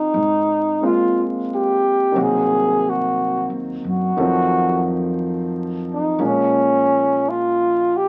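Smoky and intimate, this brief fragment of a slow jazz ballad in F minor at 59 BPM, with a swung 4/4 feel, features a mellow, up-front flugelhorn carrying the melody with light vibrato over a warm concert grand piano accompaniment with deep bass and a woody pizzicato upright bass, all heard through light reverb and the crackle of a very old 78 rpm record as the chords move from Fm9 through Cm7b5 and F7b9 to Bbm7.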